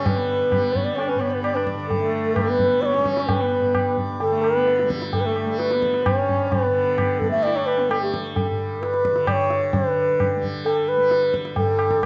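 Hindustani classical music in raga yaman on G, a meditative, devotional passage cut from a longer piece, moving at 130 BPM in a straight 7/4 with the tanpura's softly plucked, buzzing drone shimmering underneath throughout. Up front, an airy bamboo bansuri carries the tongued, expressive melody with vibrato, while a dark bowed sarangi adds a gliding second line rich in portamento and sympathetic-string resonance until it drops away at 8.2 seconds. A high-tuned, ringing tabla with a vintage, band-limited tone keeps time alongside them, all captured with close, detailed microphones in a moderate recital-hall reverb, and a new section begins at 9.7 seconds.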